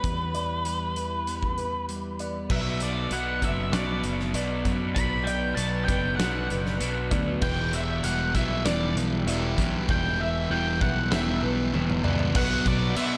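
Post-rock excerpt, melancholic and cathartic, where a dark fuzz lead guitar with slapback echo and analog delay sings its melody over bright, twangy twelve-string arpeggios, a muted felt piano in the background, floating sul tasto strings, a punchy fingered bass and a big rock kit with a fat snare, as a crunchy up-front overdriven guitar riff joins at 2.5 seconds and a sludgy distorted guitar at 7.4 seconds to thicken a build-up that ends in a drum fill, all in a lush hall with a big arena sound.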